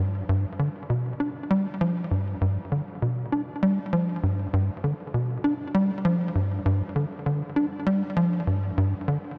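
Ambient music with a luminous, cosmic mood, cut from a longer piece and set in a steady 4/4 with a straight feel. A lone tight sequencer bass carries the whole passage from 0.0 to 9.2 seconds, moving between G2 and D4. Its sawtooth and square-wave tone has a punchy, filter-plucked bite with a fast attack that decays into a mellow tail, giving the line a driving pulse while sitting up front. Analog chorus and delay color the bass, and a huge ambient reverb with an 8.2-second decay soaks the mix in a dreamy haze. The result pairs a firm, propulsive voice with a vast, glowing space around it.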